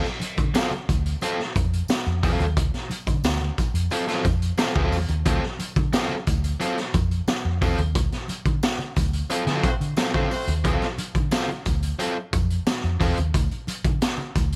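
Gritty and strutting, this dry funk clip rides a single D7#9 chord, with a raw garage drum kit of punchy kick and high-tuned snare sitting saturated and up front beside a dark, round, foam-muted fingered electric bass. An overdriven, picked electric guitar plays the accompaniment while very quiet congas and a distant, jingly tambourine add bright percussive color underneath. A band accent hits from 8.0 to 10.6 seconds, where a clear vintage horn section with light vibrato and octave doubling briefly cuts in, a slapback echo trailing the brass.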